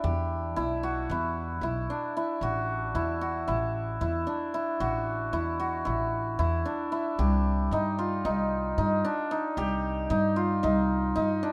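Contemporary chamber music in an uneven 9/8 with an urgent, pensive mood, cut from a longer piece, where a bright, shimmering hammered dulcimer rings out arpeggios in a narrow middle range over a woody, thumpy pizzicato upright bass, both up front in a close, detailed, dry recording as the harmony moves from Em to A5 at 2.4 s and Cm at 7.2 s.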